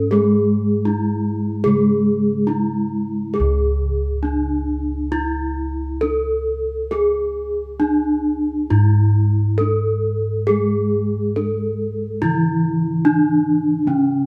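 The recording places a small gamelan ensemble live in a moderate stone room, whose one-second reverb lends the bronze a gentle halo. This hypnotic, shimmering passage of Javanese gamelan in C# pelog is cut from a longer piece and moves in a straight 4/4 at roughly 67 to 83 BPM. Up front, a bronze metallophone struck with a wooden mallet carries the melody between C#4 and A4 throughout, its paired tuning producing ringing, beating overtones. Bossed gongs played with padded beaters hold the bass from C#2 to G#4, sounding round, dry and full, as if miked close. A second metallophone, sounded with padded disc mallets, adds a soft, airy accompaniment in the lower register from the opening to 3.4 seconds, then returns at 10.5 seconds. A brief opening section gives way at 3.3 seconds to a longer second section that runs to the end.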